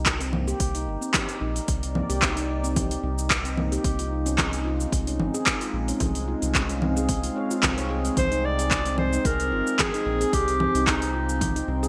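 A soft-edged classical clarinet steps up front at 8.2 seconds over this earthy, mystical organic downtempo passage in C minor at 111 BPM, cut from a longer piece, where a ringing, meditative handpan traces echoing arpeggios, a detuned, warbling vintage pad with sampler grit and a round, dark bass pump beneath, and an overdriven deep house kit of cabasa, congas, handclaps and metallic hats drives alongside a deep electronic kick, all under a bright 1980s-style digital sheen with plate reverb.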